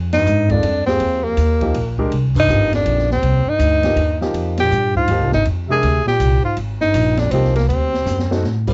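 Cool and searching, this modal jazz waltz cut from a longer piece sets a breathy, whispered tenor saxophone melody up front over a woody pizzicato upright bass, with a close-miked bass clarinet holding a second line in the background, an intimate upright piano whose action noise is audible, and a drum kit with dark cymbals, a high-tuned snare and a boomy kick, the band hitting accents together at 0.1, 2.3 and 4.5 seconds before the harmony moves from Fm11 to D7b9 and the drums close on a short fill, all heard through a homemade cassette recording with light reverb and a dulled top end.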